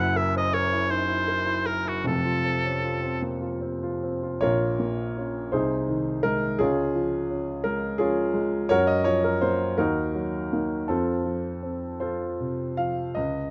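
A bright oboe with light vibrato sits up front in this elegiac, yearning fragment of a romantic classical duo, singing its melody between Gb4 and Gb5 before falling silent at 3.2 seconds. Beneath it, a warm, natural-sounding grand piano provides the accompaniment, ranging from deep F1 up to F5 and continuing alone until 13.5 seconds. The music moves in a slow, flexible 6/8 at around 49-58 beats per minute in dotted quarters, its rubato giving the phrases a sighing, unhurried pull. The opening section rests on a Gb7 chord that turns to F, and from 4.4 seconds a second section unfolds through Bbm, Ab/C, Db, Gbmaj7 and Ebm before returning to F. Close, detailed microphones and a light reverb keep both instruments intimate and present, and the passage is cut from a longer piece.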